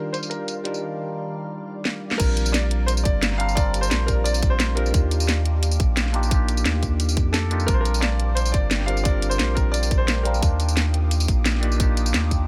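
A deep, round sine sub bass sits up front in this uplifting liquid drum and bass passage at 175 BPM in Bb major, arriving with a tight, layered electronic kick at the drop at 2.2 seconds. Before that, the opening is carried by a filter sweep on the garage drum kit, whose cracking snare, hi-hat, tambourine and crash cymbal sit close and forward, and a short drum fill leads into the drop. A present, polished grand piano with delay carries the melody until 11.6 seconds, over a bright, bell-like tine electric piano accompaniment treated with phaser and dub echo. Behind them, a dark, ethereal FM pad with slow attack, ensemble chorus, built-in reverb and sidechain pumping holds sustained chords that alternate between Ebmaj9 and Bb6. The whole mix is bathed in a low-pass-filtered digital ambience, and the passage is cut from a longer piece.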